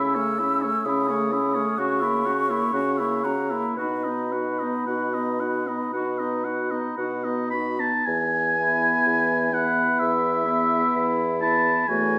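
An up-front oboe with light vibrato carries the second line in this tender, serene slow romantic movement for wind quintet, cut from a longer piece and played with rubato in 4/4. Above it, the concert flute sings the melody with an airy, hollow tone, tongued and shaded with vibrato. Beneath, a clear but distant, roomy clarinet and a dark French horn with a smooth top fill in the accompaniment. A present bassoon with soft attack and gentle vibrato holds the bass with a warm tone. The harmony moves from A/C# through F#7/C# to B, then settles on E as a new section opens at 8.1 s, and all five voices play together through to 12.2 s under a moderate recital hall reverb.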